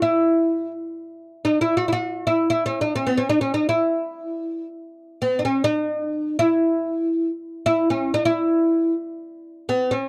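Arabic music in free time, this stately excerpt cut from a longer piece presents a solo oud in maqam huzam on E, tuned to A4 = 442 Hz. The fretless, plectrum-plucked oud sounds woody and warm, its double strings ringing up front across a compact range from B3+40c to F#4-50c over the full 10.1 seconds. The close, dry 1970s-style studio sound carries only a light touch of reverb.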